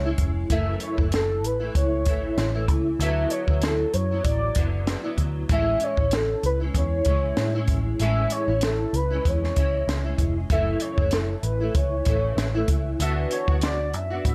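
A velvety synth lead carries the melody from the first moment, its mellow sawtooth-and-triangle tone shimmering with tremolo, lush chorus and vibrato, over a small, fingerpicked nylon-string guitar softened by ensemble chorus and a warbly pitch drift, while a round, foam-muted electric bass sits underneath. A compact cocktail kit joins at 0.2 s, up front and dusky, with a punchy kick, high-tuned snare and hi-hat. This hazy, laid-back bedroom-pop cut moves at 96 BPM in A major with a light 16th-note swing, drifting through Amaj7, F#m7 and D69 chords in a dry, intimate mix.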